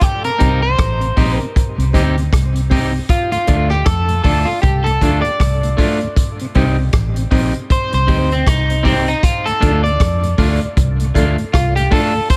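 Roots reggae at a laid-back 78 BPM with a swung 16th feel and a serious mood, this short excerpt features a twangy, slightly broken-up lead guitar with tape echo playing a clean-toned solo over Cm and Dm chords, backed by a second, picked electric guitar with its own tape echo, a round, foam-muted bass, a vintage drum kit with a punchy kick, rolled-off top and rim clicks, and a smooth tonewheel organ with key click, slow rotary speaker and dub echo sitting in the background of a small room.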